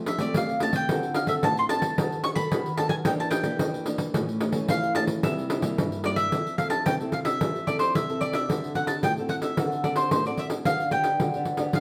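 Set in a wet studio reverb and heard from further back in the room, this short cut from a longer piece of samba and choro moves at 111 BPM in a straight 4/4 with a festive, joyful mood. A picked, woody mandolin carries the melody with its double strings up front, beside a jingly pandeiro played with soft hands, while a dark, fingerpicked nylon-string guitar sits smaller in the mix, comping from the opening Fadd9. The harmony travels through Dm7, B7/D#, Em7b5, A and C7 before settling into F major at 6.3 s, where the second section begins on Fmaj7 and passes through D7 to close on G/D.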